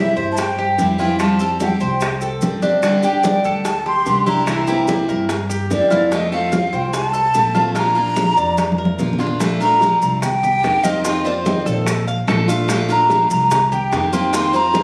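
A breathy, hollow jazz flute carries the melody up front from the first moment, over a bright picked steel-string acoustic guitar, a metallic double-strung Cuban tres playing arpeggios and a woody, thumpy pizzicato upright bass, setting a relaxed, danceable Cuban son and guajira groove at 146 BPM in Bb major. From 0.2 seconds, damped congas and round low-tuned bongos sit in the background alongside close, dry, grainy maracas, and a drum fill at 8.6 seconds leads into a second section built on Bbmaj7, Cm7 and F7sus4. The sound has a moderate plate reverb and a roomy, phone-captured character, and the piece is cut from a longer performance.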